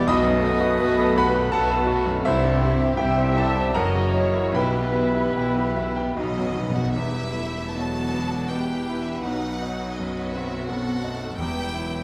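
Passionate and brooding, this romantic classical movement for piano and orchestra unfolds in a rubato three-beat lilt, cut from a longer piece. A clear, intimate baby grand sits up front carrying the melody across a broad range, its action noise audible and its notes ringing with long sustain, while a smooth studio violin section also plays the melody from close by. Behind them, an airy flute section and a mellow solo clarinet trace a second line alongside a focused chamber violin section, with a distant chamber viola section filling out the accompaniment and lush symphonic cellos and chamber double basses anchoring the bass. In the opening half, a loose French horn section and a very quiet, tight trombone section hold sustained chords as a dark solo trumpet adds stabs, and the brass falls away at 6.6 seconds. Hard-mallet timpani, close and dry, enter at 4.5 seconds and play a fill leading into the second section, returning briefly near the close, all within a moderate scoring-stage reverb.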